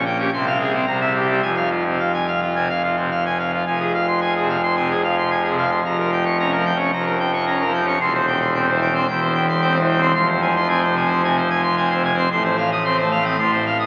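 In a straight, steady 4/4, this dramatic, stormy organ toccata is taken from a longer piece and heard through the crackle of a very old 78 rpm record. A solo pipe organ plays alone on full organ with mixtures, sounding majestic and brilliant in a romantic voicing, placed up front and spanning from deep pedal notes to high treble. The harmony moves through dark minor chords to a dominant seventh in the closing moments, all bathed in a long, wet church reverb of about 3.6 seconds.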